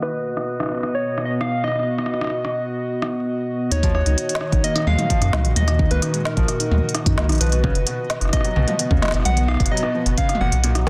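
Glitchy and cerebral, this IDM excerpt moves at 130 BPM in Eb minor with a straight 4/4 feel, its chords shifting from B to Ebm and back to B. From the first second, a round, gentle FM lead with a keys-like struck quality carries the melody through chorus, vibrato and digital delay. Beneath it a warbling, nostalgic pad holds detuned, full-bodied chords with a slow attack and long release, while an organic electronic kit of smooth hats, rim clicks, toms and a woody, softly clipped snare ticks along, all under a filter sweep that runs until 3.7 seconds. At 3.7 seconds a round, deep analog bass arrives up front with a nasal, plucky edge, joined by a felt-muted upright piano playing intimate, mellow arpeggios roughened by vintage 12-bit sampler grit and digital delay, and a deep, tape-warm electronic kick follows at 3.8 seconds. The dense, heavily limited master sits under light reverb and a low-pass filter, with faint mains hum in the background.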